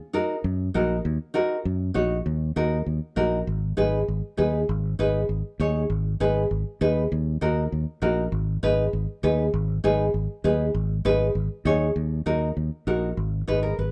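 A straight 4/4 Latin groove at 198 BPM drives this danceable, dark-hued excerpt in Eb minor, cut from a longer piece, with the harmony moving between Ebm and Abm. A fingerpicked nylon-string guitar enters at 0.1 seconds with a woody, full-bodied tone from old strings, joined at 0.4 seconds by a round, punchy fingered electric bass, both sitting up front. Moderate studio reverb gives the pair a sense of room, and the guitar slips in a brief fill at 13.5 seconds just before the cut.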